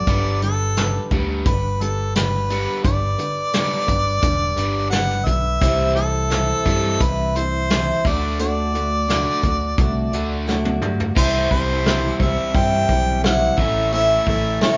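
The recording has the close, dark sound of a band playing live together in one room, with a moderate studio reverb and a top end that's rolled off and dulled. It's a jangly, open-road slice of folk rock and heartland rock in a straight 4/4, cut from a longer piece. A clear, close-miked harmonica carries the melody up front, with light vibrato and scooped notes. Beneath it, a boxy picked acoustic archtop guitar plays the accompaniment with audible finger squeak, while a biting, double-tracked overdriven electric guitar plays a riff bathed in spring reverb. A growly, amped fingered electric bass anchors the low end, and a soft brush drum kit with dark cymbals, a medium-tuned snare and a tight kick plays a fill from 10.5 to 11.2 seconds, leading into a new section at 11.2 seconds where the chords move from C to A.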